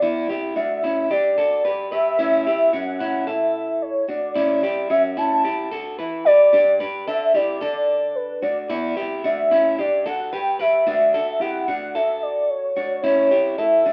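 Bright and breezy, this indie pop excerpt moves at 111 BPM in a straight 4/4 feel and runs just under 14 seconds, cut from a longer piece. A velvety synth lead carries the melody up front, its detuned unison sawtooth and triangle tones softened by chorus and a mellow, sustained quality, with portamento gliding between notes. Beneath it, an electric guitar through a small old amp plays picked arpeggios at a lower level, its tone twangy and slightly broken-up. The harmony moves from Gadd9 to A, back to Gadd9, then to Dadd9 before landing on A7 at 13.0 seconds. A wet small-room reverb and a rough home-demo mix give the whole thing an intimate, casual feel.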